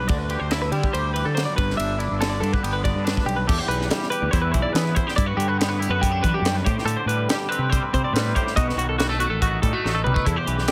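This bright, intricate slice of math rock and Midwest emo opens with a twangy electric guitar, a twelve-string electric guitar and a fuzzed fingered bass all sounding together. The drums join at 0.1 seconds, a crisp fusion kit that sits up front with a high-tuned snare, a punchy kick, and hi-hat, ride, crash and toms in an airy, polished studio room. The twelve-string spins clean, compressed arpeggios high above, while the scooped accompaniment guitar carries an ensemble chorus shimmer. Underneath, the bass growls with overdrive, its tone direct and amped. The harmony moves from suspended and add-nine colours into a passage of Em7, Cmaj9 and Gmaj7 at 3.5 seconds, reaching B7 at 8.6 seconds before a drum fill at 9.8 seconds, all under a light reverb.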